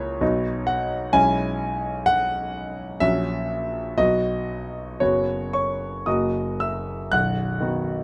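A romantic classical character piece for solo piano, this short, lyrical passage unfolds in B major at a slow 55-66 BPM in 2/4, shaped by a flexible rubato and a hopeful mood. The concert grand sounds clear, natural and up front, spanning from a deep bass at B0 up to F#6, with light reverb around it. Its harmony moves from B through C#m7/B and F#7/A# to B, then settles via F#sus4 and F# back onto B at 7.1 seconds, shortly before the fragment ends.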